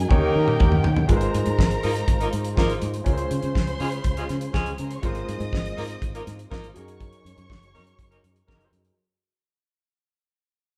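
Joyful and celebratory, this disco clip opens on a drum fill from a dry, up-front 70s kit with a fat snare before fading out over a round, foam-muted fingered bass, tight horn stabs, a natural grand piano, lush bowed strings set back in the room, and a mellow tonewheel organ with key click and fast rotary speaker in the background, all captured as a band playing live in one large studio.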